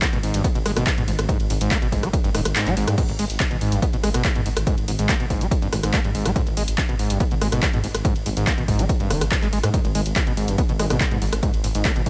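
Driving, relentless peak-time techno in G# harmonic minor at 142 BPM opens with a squelchy, gritty acid bass riff carrying distortion, analog chorus, dub echo and a resonant filter sweep. Beside it sit a layered, punchy electronic kick and an overdriven analog drum machine of crash, ride, hi-hat, handclaps and rim click that sits up front, re-recorded in a large room, with its hats and cymbals pumping against the kick. From 0.1 seconds a deep, rumbling, detuned saw bass adds a dark, beating low end, and the kick drops out briefly from 2.6 to 3.0 seconds in this industrial, dry cut from a longer piece.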